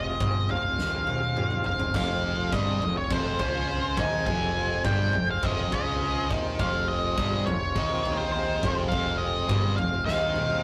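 A dark, fuzzed-out lead guitar sits up front, carrying the melody between C5 and Ab5 with distortion and a slapback echo, in this angsty, dark fragment of quiet-loud alternative rock in F minor, tuned to A4 = 443 Hz. Beneath it, an electric guitar through a small old amp plays tremolo-laced arpeggios with a slightly broken-up, lo-fi, compressed tone, while an overdriven picked bass holds the low end from the background. At 104 BPM in 4/4, the feel is half time throughout, and a big acoustic drum kit with a tight kick, medium-tuned snare, toms, a splash cymbal and bright cymbals comes in at 0.2 seconds, playing fills from 0.8 to 2.0 seconds and again at 10.1 seconds. At 1.9 seconds a bright, overdriven rhythm guitar enters up front with a picked riff. The whole thing sits on a single F minor chord and has the rough, tube-saturated sound of a rehearsal room, with a wet, short reverb.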